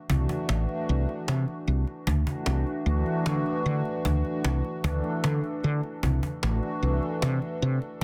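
A woody, hollow-bodied fretless electric bass, direct and amped and sitting up front, drives this intricate progressive instrumental in 5/4 at 152 BPM in C lydian, with an acoustic cajon played with hard hands, its faint snares heard in a small room, alongside it, the pair set in light reverb under a dense, heavily limited modern master.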